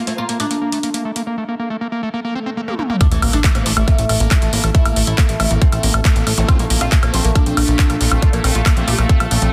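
Hypnotic and psychedelic, this 138 BPM psychedelic trance excerpt in A phrygian sets a woody, plectrum-plucked oud melody with phaser and tape echo over a squelchy, distorted acid bass riff, a bubbling stepped-filter texture, a dark, nostalgic tape-like pad and a techno drum kit with metallic hats, handclaps, toms and woodblock, with the oud, acid bass, texture and pad pumping against the sidechain, until a drop at 3.0 s brings in a tight, up-front electronic kick and a punchy, funky analog bass, while a nasal vowel-sweep wobble bass hovers very quietly and faint swells, a sub drop and a zap mark the transition in a dense, heavily limited mix.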